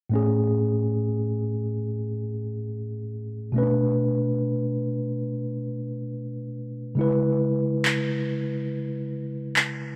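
Lightly reverberant, this dreamy, smooth contemporary R&B fragment with a gently swung sixteenth-note feel sets a mellow, clean tine electric piano up front, heard as if through its built-in speakers, accompanying on Amaj7, Bm7 and C#m7 from 0.1 seconds, while tape-warm, produced electronic handclaps join up front at 7.9 seconds and drop out at 9.8 seconds.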